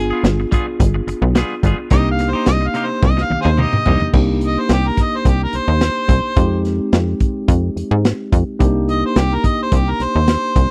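A mellow, overdriven harmonica opens this brooding, mournful straight-eighth soul blues in C minor at 108 BPM. From the start it is joined by a clean tine electric piano heard through its built-in speakers and a tight, punchy sequencer bass with a nasal sawtooth-and-square filter pluck. A crunchy breakbeat kit with dark cymbals, a tight kick and a gritty, saturated tone arrives at 0.2 seconds and sits up front with the bass, while a bright, twangy clean electric guitar adds compressed picked stabs bathed in spring reverb until 4.1 seconds. A drum fill leads into a harmonica solo from 4.1 seconds, where light vibrato, scooped notes and tongue slaps give the instrument a vintage jazz flavour over chords moving from G7b9 to Cm7, then through Fm7 and back to Cm7. The dry, close sound recalls a 1970s studio, and the passage is cut from a longer piece.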